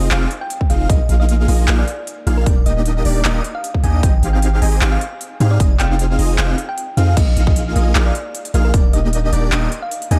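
A half-time future bass groove at 153 BPM in 4/4 carries a light swing on the 16ths, with a punchy, tape-warm electronic kick sitting up front and a big-room dance kit adding crisp hats, handclaps and crash cymbal, both re-recorded in a large room. The mood is bright and playful in Eb major, and this drop, cut from a longer piece, repeats its phrase as chords move through Fm7, Bb7sus4, Ebmaj7 and Abmaj7. A deep, sine-toned 808-style bass holds long notes low and prominent, while a huge, thick supersaw plays a compressed, detuned riff with a sub octave and a moving notch. Over them, a round, tine-like thumb-piano-style pluck carries the melody with a warbling, vintage FM character, chorus and delay. Further back, an airy, dreamy lead plays soft arpeggios with vibrato, chorus and delay, and the bass, supersaw, pluck and lead all pump with the sidechain. The kick drops out from 6.8 to 7.2 seconds before the phrase returns, all set in a dark digital ambience.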